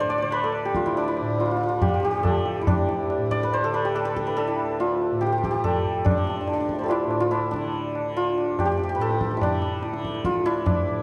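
Hindustani classical music in raga kafi on D, longing and solemn, begins at 142 BPM and speeds up across this 11-second fragment of a longer piece, with an up-front hammered santur carrying a shimmering melody between D4 and E5, a softly plucked, buzzing tanpura holding a low drone beneath, and high-tuned tabla ringing in from 0.1 s, set in a dark production with a moderate scoring-stage reverb.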